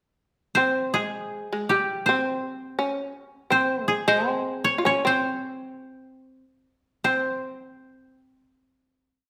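A moderate recital-hall reverb gives this short, complete piece of Japanese traditional chamber music an open resonance. The koto carries an austere, calm modal melody with ornaments, its fingerpicked tone woody and dry. From 0.6 seconds the buzzing, plectrum-plucked fretless shamisen follows the same line with its own ornaments, while the rubato 2/4 pulse, moving between 51 and 84 BPM, slows from 3.5 seconds toward a final note at 7.0 seconds.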